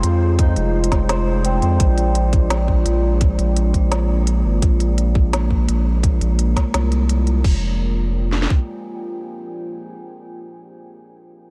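Dark and cinematic, this half-time drum and bass excerpt at 170 BPM in F dorian sets a tight, cracking up-front kit (entering at 0.4 s) and a thick, saturated sub bass beneath a deep, moody detuned pad with chorus and sidechain pumping, a shimmering hammered santur arpeggio with delay that stops at 5.5 s, a woody, crisp-hatted organic electronic kit, and an eerie metallic drone in the background, all soaked in a huge dreamy reverb as Fm moves to Bb before returning to Fm at 7.4 s.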